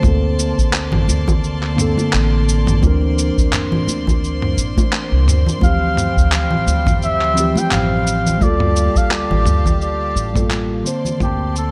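Sunset chillout at 86 BPM with a lazy sixteenth-note swing, warm and wistful, drifting through Bbmaj9, C9, Dm11 and Gm9 over a dark production with light studio reverb. A mellow tine electric piano with gritty 12-bit sampler character and digital delay carries the accompaniment beside rich, earthy chamber strings with light vibrato, while a woody pizzicato upright bass on gut strings, a deep analog-style electronic kick, an overdriven, compressed soul kit of handclaps, shaker and toms, and ringing high-tuned congas in the background hold the groove. At 5.6 seconds a veiled cup-muted trumpet enters up front with soft, scooped jazz phrasing and a touch of delay, before the piece fades out from 9.3 seconds.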